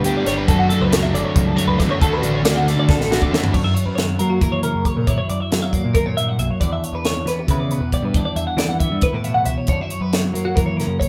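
In a straight 7/8 at 273 BPM counted in eighths, this playful, bright math rock and midwest emo excerpt pairs two clean, twangy twelve-string electric guitars (one playing accompaniment through spring reverb, the other phased arpeggios up high) with a double-tracked, overdriven semi-hollow guitar riff that drops out at 3.5 seconds after a drum fill from 2.9 seconds, a growling overdriven picked bass, and a crisp, up-front fusion kit with a high-tuned snare and dark cymbals, the band playing live in one room with moderate studio reverb as the harmony moves from Dmaj7 through F#7b9 and Em7 to F#7.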